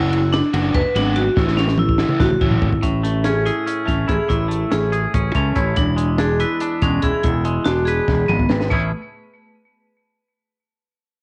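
Math rock and midwest emo in A major, playful and bright at 286 BPM in 7/8. Up-front metallic vibraphone arpeggios ring over a growly, punchy overdriven fingered bass and a compact cocktail drum kit with a high-tuned snare, tight kick and dark, rolled-off cymbals that break into fills. A raw, double-tracked garage guitar riff with spring reverb and overdrive stops at 2.7 seconds, and a clean, compressed, twangy electric guitar takes up the accompaniment from 2.8 seconds as the chords move through Amaj7 and E7. The vibraphone's analog delay and the small-room ambience of a home cassette recording round out the sound.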